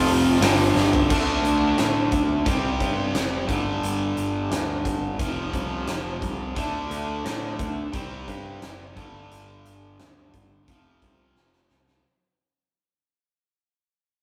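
Menacing, aggressive hard rock at 88 BPM in a straight 4/4, cut from a longer piece, where two overdriven cranked stack guitars (one up front, one in the background) grind a riff over a growly, punchy picked bass and a huge arena drum kit with a fat snare and boomy kick, while a woody koto, a biting lead guitar with analog delay and a dark, double-tracked sludgy guitar flicker only in the opening 1.7 seconds, drum fills mark 0.8 and 11.4 seconds, and the whole rough rehearsal-room take carries tube saturation and a small-room reverb as it fades out from 1.1 seconds over chords such as G5, D5, C5 and F5.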